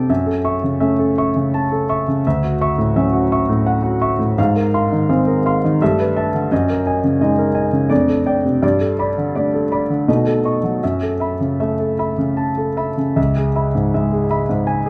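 A moderate recital hall reverb surrounds this dreamy, serene impressionist classical excerpt for solo concert grand piano, heard intimate and up front with deep bass and audible action noise, moving in a rubato 3/4 at 75-89 BPM with tuning at A4 = 436 Hz, through lush harmonies from F#m7 and Dmaj9 into a chain of sixth-nine chords and B9 before reaching C#m7 at 13.2 s.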